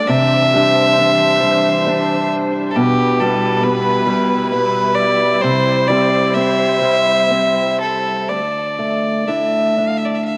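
Celtic folk slow air in 3/4, moving at 60-70 BPM with a rubato, longing and mournful feel, tuned to A4 = 439 Hz and cut from a longer piece. A single bowed fiddle with a nasal, reedy gut-string tone carries the melody up front, touched with tape echo, over a fingerpicked acoustic archtop guitar whose dark voice and audible finger squeak sit close beside it, while a muted studio string section adds veiled, con sordino sustained chords with light vibrato and soft attack until 8.3 s. The harmony moves through Cadd9, Em/B and C before settling on Dsus2 as a new section opens at 8.3 s, all within light reverb.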